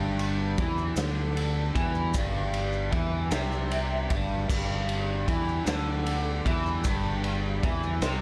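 Kaleidoscopic and hypnotic, this psychedelic rock excerpt in G major sways in a slow 6/8 at 51 BPM. A bright, double-tracked guitar riff with overdrive and flanger sits up front beside a round, dark fingered bass from the start. A gritty, saturated garage drum kit with a punchy kick and rolled-off top comes forward at 0.2 s. In the background, a thick overdriven tonewheel organ holds sustained chords through a slow rotary speaker, and mellow, grainy maracas join at 0.8 s, all within a small-room reverb.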